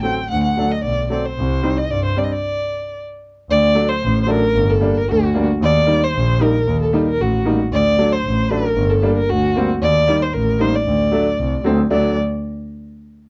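The dark violin leads, one bowed player up front, singing a soulful, bittersweet melody with vibrato, portamento and a smooth top to its expressive tone. This short klezmer excerpt moves at 114 BPM in a straight 2/4, set in D phrygian dominant and cut from a longer piece. A bright upright piano, woody and brilliant with an open sound, supports it with accompaniment from the start, and a bowed double bass joins at 0.3 seconds, focused yet distant, with its own vibrato. The harmony moves from D to Cm before the band stops together from 2.4 to 3.5 seconds, then resumes on D and cycles through Gm and Eb back to D. Light reverb and a dark, warm production give the whole a bittersweet glow.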